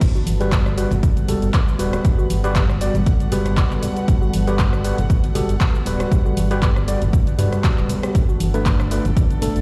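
This relaxed, sunny deep house excerpt opens on a single Gmaj7 chord, with a punchy, overdriven electronic kick sitting up front over a round, deep analog bass that pumps against the sidechain. A layered deep house kit adds crash cymbal, handclaps, hi-hat, rim click and shaker with a swung sixteenth-note feel, while a very quiet, smooth detuned pad holds sustained chords. A dark string section bowed sul tasto with light vibrato breathes in the background and pumps along with the bass. A warbling, nasal pluck spins very quiet lo-fi arpeggios from 0.2 seconds, soft-handed congas enter at 0.3 seconds, and a gritty tine electric piano through a combo amp lands stabs from 0.4 seconds, roughened by 12-bit sampler crunch and trailed by dub echo. The mix sounds as if played on a big sound system in a bare room, with large studio reverb and a layer of vinyl crackle.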